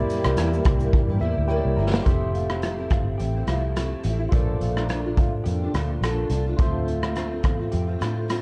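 A raw garage drum kit sits up front in this short cut from a longer indie and bedroom pop piece, its punchy kick, medium-tuned snare, rim click, hi-hat and shaker carrying a gritty 12-bit sampler grain and a pumping small-room sound at a laid-back 106 BPM in 4/4 with a light sixteenth-note swing. A dark, foam-muted fingered bass stays round and prominent beneath, while a picked steel-string acoustic guitar with an ensemble chorus and warbly pitch drift and a barky tine electric piano, lightly overdriven through a combo amp with a cassette-tape tint, fill out the accompaniment in F major. A swirling, detuned sawtooth pad with phaser and chorus hovers in the background over the opening C7 until 2.0 seconds, as the drums and electric piano each play a fill from 0.9 seconds. At 2.1 seconds, a slightly broken-up, lo-fi electric guitar through a small old amp adds a second line with analog chorus and tape echo, as the harmony moves through Fmaj7, Bbmaj7 and Dm7. 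Light reverb and a dark, warm production give the whole a nostalgic, unhurried feel.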